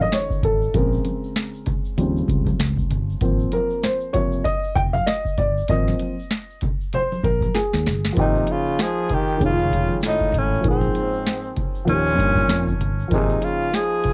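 Warm yet cool, this jazz-hop excerpt in Ab major moves at 97 BPM with a swung 4/4 feel. A dark, woody upright piano with audible action noise takes the spotlight over a round fingered electric bass, bright band-limited congas and tube shaker, and a booming analog drum machine with a deep kick, crisp snare and metallic hats, with the piano and drums both colored by cassette tape. After a drum fill at 7.5 seconds, a breathy, whispered tenor saxophone carries the melody from 8.2 seconds with scooped notes and tape echo, while a raspy, growling trombone adds a gritty second line beneath it.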